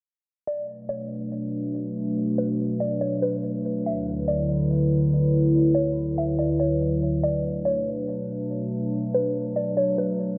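A hazy, melancholic hip hop fragment in B minor at 142 BPM with a half-time feel, cut from a longer piece and moving from Bm7 to Dadd9 and back to Bm7 at 7.2 seconds. A warbly, tape-like pad with a dark, nostalgic lo-fi character sits up front holding sustained chords from 0.5 to 10.4 seconds, while a woody, round, mallet-like synth pluck carries a mellow melody between B4 and E5, colored by chorus, phaser and delay. The whole passage is steeped in a lush hall reverb and shaped by a low-pass filter sweep that runs throughout.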